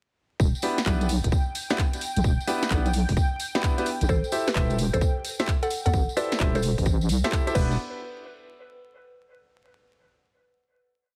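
A deep, wobbling bass sits up front in this skippy, late-night two-step garage piece, its saturated, detuned square-and-sine tone carrying a skipping, syncopated line. A tight electronic kick holds a four-on-the-floor pulse, while the garage kit adds a cracking snare, handclaps, crash and swung hats and rims, with jingly, close tambourine sixteenths running underneath. A bright baby grand piano punches in syncopated chord stabs, one shape moved in parallel, with audible action noise and a digital delay trailing each hit. A smooth, detuned sawtooth pad holds a high note behind it all, pumping against the kick, as the harmony moves from Em7 to Am7 at 4.1 seconds. At that point a woody, round synth pluck enters with a repeating riff in thirds and sixths, touched by dub echo. The mix has a heavily compressed, radio-like sound with vinyl crackle, and after the drop a final hit rings from 7.8 seconds to the close.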